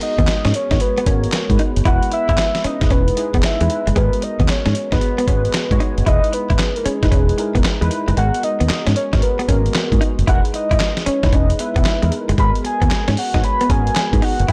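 A gritty, compressed sampler-style drum kit with a thumpy kick, snare, handclaps and hi-hat sits up front in this punchy, slick new jack swing groove at 114 BPM with a swung 16th feel in G# minor, joined at 0.2 s by a round fingered electric bass, while a bell-like tine electric piano with analog chorus and a clean, picked electric guitar riff with lush chorus outline G#m9 and Emaj7 chords beneath a soft, octave-layered synth lead melody with vibrato, all set in a dark, warm production with light digital reverb and a brief pause of the kick at 8.2 s.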